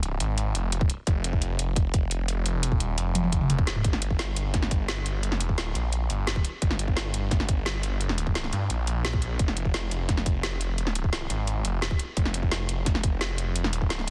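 Dark technical drum and bass at 173 BPM in 4/4 with a straight feel, this short piece cut from a longer track sits in G phrygian and carries a mechanical, dark mood. A snarling sawtooth bass growls between F1 and G2 from the very start, its detuned unison voices and sine layer pushed through distortion and overdrive into an aggressive, compressed, bright tone with a fast attack, long sustain and a moving notch. A layered electronic drum kit runs alongside it, with metallic hats, a woody snare and toms, and a drum fill breaks through at 3.2 seconds. A tight, up-front electronic kick joins at 0.8 seconds and punches alongside the kit until just before the end. The sound is dry and close, with the drums re-recorded in a small room and the whole mix squeezed into a dense, heavily limited modern master.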